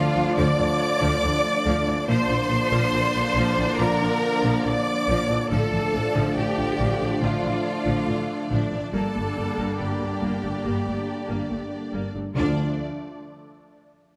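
A tense, vast hybrid orchestral and electronic film cue in D minor at 70 BPM opens with up-front rich cellos and focused double basses carrying the low end, while a soft, round pluck spins chorused, delayed arpeggios over a swirling, airy phased pad, as dark French horns and bright trombones hold sustained chords in the background, very quiet smooth violas accompany, a distant, intense violin section sings the melody, and a studio violin section adds a vibrato-rich second line, all moving through Dm, Bb, Dm/A and Gm in a moderate scoring-stage reverb before returning to Dm at 12.4 seconds.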